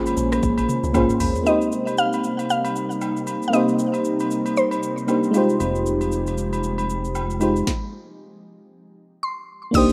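A rough home-demo mix with moderate plate reverb carries this deep, hypnotic amapiano piece at 116 BPM in C phrygian with a swung 16th feel, where a soft, round FM electric piano with chorus sits up front under an ethereal, airy pad and a woody, chorused mallet-like synth pluck with tape echo, while a dark log drum bass opens with a drum fill from the electronic afro-pop kit (deep kick, sharp snare, metallic hats) and agogo bells and woodblock, a fat, saturated analog bass enters at 5.6 seconds, and a stop at 7.7 seconds leaves the keys, pad and drum kit sounding.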